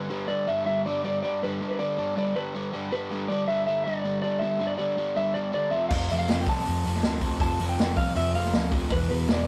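Raw and rowdy, this garage rock excerpt opens with a slightly broken-up, compressed slide guitar carrying the melody over a crunchy, double-tracked overdriven guitar riff sitting up front, moving from G to F and landing on E5 near the end. At 5.9 s a growly, punchy picked bass and a vintage acoustic drum kit join in, the kit placed up front with a medium-tuned snare, a punchy kick, crash and hi-hat, and a rolled-off top. Light reverb and a rough rehearsal-room sound give the whole clip a natural, small-room feel.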